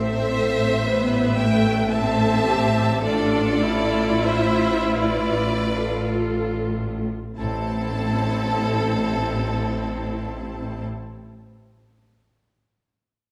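In a rubato 3/4 between 35 and 57 BPM that slows through its first 7.4 seconds, this solemn, melancholic excerpt of a slow romantic movement for string orchestra in A minor moves from Am to Dm/A and back to Am. Bright violins carry the melody over a lush second violin line, while up-front, smooth violas play the accompaniment and intense cellos with focused double basses anchor the bass, all bowed with vibrato until 10.8 seconds. A wet scoring-stage reverb surrounds the sections.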